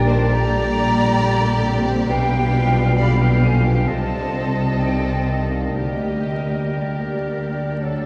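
This solemn, yearning fragment of a classical piece in G minor opens with the full orchestra at once, moving with rubato at roughly 58-68 BPM in 4/4 as a distant, bowed violin section carries the melody with vibrato over chords moving from Gm/Bb through G7/B and Cm to Gm/D. Above it, an airy flute section, a second, lush violin section and a roomy oboe weave second lines, while a very quiet bassoon, a background viola section, a tight French horn section holding sustained chords and a ringing, thumb-plucked concert harp playing arpeggios fill the accompaniment. Focused cellos and up-front double basses anchor the bass, and the whole is heard from further back in a reverberant concert hall with vinyl crackle over the 8.1-second passage.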